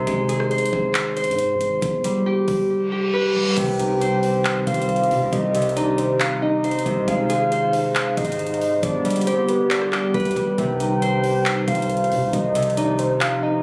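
A mellow, ringing concert harp sits up front, its fingerpicked arpeggios echoed by digital delay, in this melancholic, eerie half-time trap excerpt at 137 BPM in C harmonic minor, cut from a longer piece. Beneath it, a deep sine-like 808 bass, a trap kit with a knocking kick, metallic hi-hats, handclaps, rim clicks and crash, and a reverse cymbal rising into an electronic impact at 3.6 seconds mark the move from the opening into the second section over a repeating Ab, G, Cm progression. From that point, a dark, round octave-layered synth lead with vibrato, chorus and delay carries a second line above a hollow, flute-like vintage pad that warbles in the background, all heard as if captured on a phone in a club-like room, with compression.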